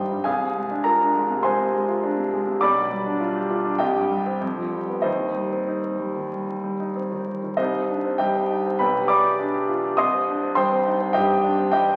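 Passionate and stormy, this classical virtuoso piano study in C minor moves at a rubato 93-105 BPM in 4/4, heard as a short cut from a longer piece. A solo concert grand carries it all, placed up front with a clear, intimate tone, deep bass, long sustain and audible action noise, ranging from B1 to Eb6 as the harmony circles through half-diminished and dominant chords back to C minor, with the opening idea returning at 7.6 seconds. A wet recital hall reverb surrounds the piano, and the sound is that of a very old 78 rpm record with vinyl crackle.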